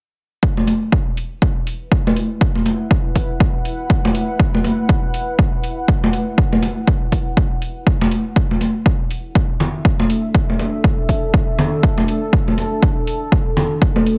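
A punchy, overdriven kick opens this swung, deep house section at 0.4 s, quickly joined by ringing, high-tuned congas struck with hard hands and metallic, overdriven hi-hats, all three placed up front. From 2.2 s a moody, detuned sawtooth pad with a sub octave, wave-folding and ring modulation fades in slowly. It is softened by chorus and its own reverb, pumps against the sidechain, and moves from Esus2 to Dsus2 at 8.1 s. The overall sound is dry and heavily compressed, like radio, giving this cut from a longer piece a warm, deep mood.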